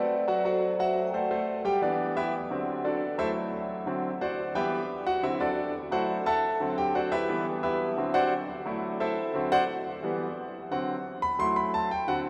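Latin music at a brisk 175 BPM in 4/4, danceable and passionate, set in the long, wet reverb of a church or concert hall. A dry, close-miked vibraphone with medium mallets carries a ringing, metallic melody in the background for the first 1.6 seconds, over a bright concert grand piano accompaniment. From 1.8 seconds the up-front piano, brilliant and polished with deep bass, takes a solo over a cycling progression of Em, D7 and F#m7b5.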